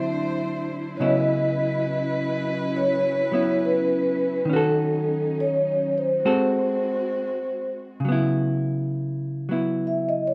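Wistful and melancholic, this brief jazz ballad excerpt moves at a slow 68 BPM with a swung feel in C# minor, with chords passing from D9 and C#m11 through D#m7b5 and G#7b9. Up front, a mellow, ringing vibraphone played with soft mallets and a fast motor vibrato carries the melody, while a clean, fingered hollow-body electric guitar with a dark tone accompanies, and a lush, woody bowed cello section holds sustained chords until 8.0 seconds. From 8.0 seconds the vibraphone takes a solo over the guitar as the harmony settles on C#m7, all set in a wet studio ambience.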